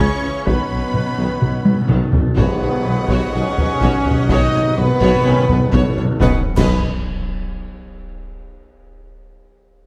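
A straight 4/4 pulse at 125 BPM drives this short cut from a triumphant, adventurous epic orchestral film score in B major, with a taiko ensemble struck with hard sticks entering at 0.5 s alongside timpani played with soft mallets for a round tone. A lush violin section with vibrato carries the melody over a second violin line with light vibrato, a pure, expressive concert flute with a soft attack, and a rich viola section, all sitting back in the mix. Mellow French horns, a distant, roomy trombone section and a vintage-toned woodwind section hold sustained chords on a Badd9 harmony, while a tuba, cellos and double basses anchor the low end very quietly. The timpani fills run through the opening and middle sections, a drum fill leads into a full-band accent at 2.4 s, where a tam-tam, concert snare, bass drum and clash cymbals with dark cymbal tones join in, and another accent lands at 6.2 s. 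Light reverb and close, detailed microphones keep the sound clear and immediate.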